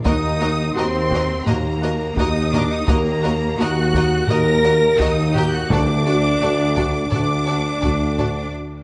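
Close, dry taiko drums struck with heavy sticks drive this relentless, dark passage of epic orchestral film score, cut from a longer piece. Intense, distant violins carry the melody high above a lush string body of background violins and expressive violas, with rich cellos, soft-attack double basses and a clear solo tuba anchoring the bass, while mellow, vintage French horns hold sustained chords in the background. The harmony shifts from E-flat minor to D at 5.7 seconds, where hard-mallet timpani join briefly, and a huge, dark reverse cymbal sounds very quietly at 8.8 seconds, all set in a wet scoring-stage reverb.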